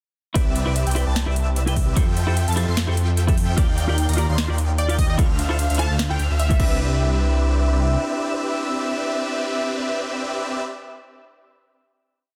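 Huge, phaser-washed supersaw chords throb in tempo through this bright, euphoric future bass piece at 149 BPM in a half-time feel, over a punchy, up-front electronic kick, an overdriven trap kit with a sharp snare, metallic hats and hat rolls, and a thick detuned saw bass following the chord rhythm, while a clean, picked electric guitar adds dotted-rhythm chords, an airy, dreamy lead with vibrato doubles the chords in the background, and a catchy plucky unison lead enters at 4.8 seconds before the drums stop at 6.7 seconds and the remaining parts ring into a final hit.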